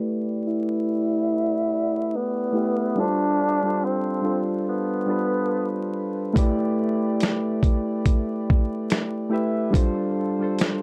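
Swung sixteenths at a relaxed 71 BPM in 4/4 give this hazy, nostalgic lo-fi hip hop clip in A minor its lazy sway, cut from a longer piece and carried by round, dark electric-piano-like synth keys with chorus, cassette tape color and a filter sweep across A9sus4 and G9sus4 chords. A breathy, growling tenor saxophone sings a mellow jazz solo from 0.5 to 5.9 s, with vibrato, scooped notes and a raspy subtone edge. Then a compressed, sampler-style soul drum kit enters up front at 6.4 s with finger snaps, hi-hat, a thumpy kick and a medium-tuned snare, all set in a small room with vinyl crackle and a gritty hardware sound.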